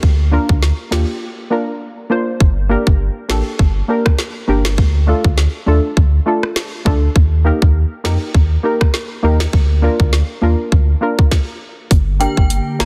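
A deep, full sub bass with an octave layer and an electronic island-pop kit open this bouncy, tough dancehall clip, both sitting up front with a shuffling sixteenth-note swing. The kit pairs a tight kick and metallic hi-hats with rim clicks and a woody snare given a touch of soft clipping, all carrying a tape-like character. Almost at once a dark, mellow chord stab joins, its detuned, plucky tone softened by chorus as it moves through a minor progression, and the groove drops into a break at 1.2 s. After a stop at 11.3 s, a glassy, ethereal FM pad swells in at 12.1 s with ensemble chorus, reverb and sidechain pumping, while a chiming, inharmonic synth melody rings high above it through chorus and digital delay. The sound is dry, dense and heavily limited, and the clip is cut from a longer piece.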